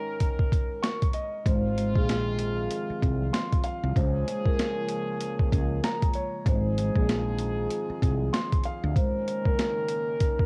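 Warm and soulful, this boom-bap hip-hop excerpt moves at 96 BPM in Ab major with a 16th-note swing and the grain of a home cassette recording in a small room. A mellow vibraphone played with soft mallets carries the close-miked, dry melody from the start, while a dark grand piano with audible action noise fills in accompaniment and a loose horn section adds punchy stabs touched with tape echo and light vibrato. The sampler-style drum kit arrives at 0.2 seconds, up front, gritty and pitched down, with a thumpy kick and a high-tuned snare. A woody fretless electric bass, round and hollow-bodied with transformer saturation, enters at 1.5 seconds and drops out at 8.9 seconds. A deep analog pad of detuned square and sawtooth waves with chorus and a moving notch swells in at 2.4 seconds, sitting moody in the background. The harmony drifts from Eb7sus4 through Ab6 and Db6, back to Ab6, before returning to Eb7sus4.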